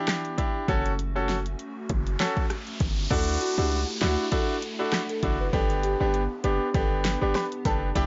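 Dancehall with a sultry, bouncy swing, cut from a longer piece, where a bright, up-front baby grand piano and a hollow, flute-like pad with ensemble chorus and sidechain pumping lay down chords over a punchy, overdriven deep house kit and a heavy 808-style bass, as a riser builds from 1.7 to 3.1 seconds, a woody marimba carries the melody through analog delay from 3.1 seconds, and a detuned, round analog pluck takes over as the marimba finishes at 7.3 seconds, all in a dry, gritty recording.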